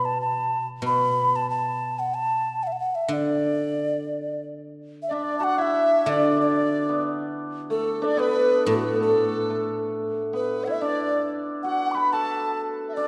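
A breathy alto ocarina opens this festive, pastoral Chinese chamber piece in a D gong mode, carrying the melody up front with a clay-like, rolled-off tone, vibrato and tongued notes, while a silvery guzheng played with fingerpicks rings out low beneath it. The ensemble moves in a loose, rubato 2/4 around 92 BPM, giving the tune a free, unhurried pastoral lilt. At 5.1 seconds a hammered dulcimer with a shimmering, ringing sound joins as a second line, alongside a large bamboo dizi whose buzzing membrane lends a pure, expressive voice with its own vibrato. The guzheng falls away at 10.7 seconds, leaving the ocarina, dulcimer and dizi to carry on until the cut at 13.1 seconds. A concert hall reverb wraps the ensemble in a lingering, spacious tail, and the passage feels lifted from a longer performance.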